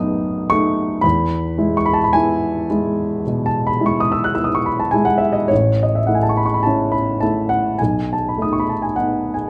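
Tender and serene, this short passage from a longer classical piece is a romantic nocturne for solo piano in E major, moving slowly at 46-57 BPM in 4/4 with a flexible, rubato feel. The grand piano has a warm, intimate and natural tone, placed up front, with the mechanical noise of its action audible. Its part spans from A1 up to F#6 across the full 9.5 seconds. The harmony opens on B7, settles onto E at 1.0 seconds, moves to A at 5.5 seconds and returns to B7 near the close. A moderate studio reverb adds a gentle sense of room around the instrument, and the tuning sits slightly below standard pitch at A4 = 438 Hz.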